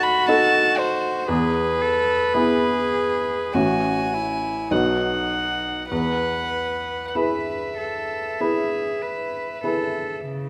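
A violin with a pure, floating tone sings the melody over a cello's airy, lightly vibrato-touched second line and a clear baby grand piano's intimate accompaniment, its action noise audible, in this serene, lyrical excerpt from a slow romantic piano trio movement in E major, played with rubato at 48 to 61 BPM in 4/4 and captured by close, detailed microphones with light reverb.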